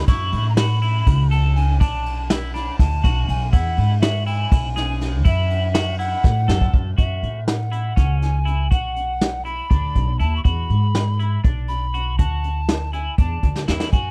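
A breathy pan flute with vibrato and a woody, thumpy pizzicato upright bass on gut strings open this tense, driving progressive instrumental in 7/8 at 243 eighth-note beats per minute, in F# minor, cut from a longer piece. A bright, clean picked electric guitar with analog chorus plays arpeggios beneath the close-miked flute's second line, while a vintage brush kit with dark cymbals, a tight kick and a rolled-off top sits up front beside the bass, pumping in its small room and adding fills around 6.2 and 13.6 seconds. The dry sound carries the harmony through F#m7, Bm7 and E before a second section moves through Bm and E7 to a closing Dsus2.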